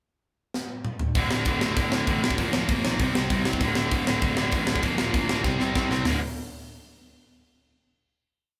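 A live-in-one-room punk rock blast with light reverb, raw and urgent, where a tight metal drum kit with a high-tuned snare opens with a fill at 0.5 seconds before up-front, double-tracked distorted electric guitar drives eighth-note power chords over a growly overdriven bass in the background, cycling through D5, Bb/D and C5 until a final D5 chord rings from 6.1 seconds.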